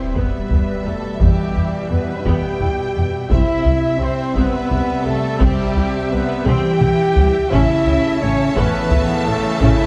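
In a slow 6/8 at 57 BPM, a taiko ensemble played with heavy sticks drives this dark, relentless excerpt of epic orchestral film score, which opens on a huge, barely audible sub drop and has a drum fill at 6.5 s, while expressive, distant violins carry the melody over an airy flute group and smooth second violins, lush background violas, tight sustained chords from prominent French horns and bright trombones, and a woody cello and rich double bass foundation moving from Em through C to A in a moderate scoring-stage reverb.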